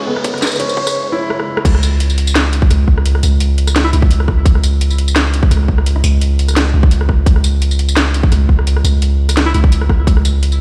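A brief, dark opening of felt-muted upright piano arpeggios, soft and intimate with audible action noise and tape echo, sits over a tense, string-like drone in C# minor that carries 12-bit sampler grit, sidechain pumping and its own reverb, while an electronic riser and a filter sweep on the piano build toward the drop. This cut from a longer half-time drum and bass track runs at 171 BPM in 4/4 with a light swing on the 16ths. A drum fill at 1.3 seconds leads into the drop at 1.7 seconds, where a deep, sine-like 808-style bass holds a long C#2 with tube saturation, up front beside a hard-clipped, overdriven electronic kick. The layered kit adds a cracking snare, metallic hats, rim clicks, tambourine and crash, re-recorded in a small room. A mellow alto saxophone surfaces only in two fleeting solo phrases on E4, smooth with subtone, scooped notes and vibrato, roughened by sampler grit and trailed by dub echo. 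The whole mix sounds as if played on a big sound system in a bare stone room, giving the groove a spacious feel.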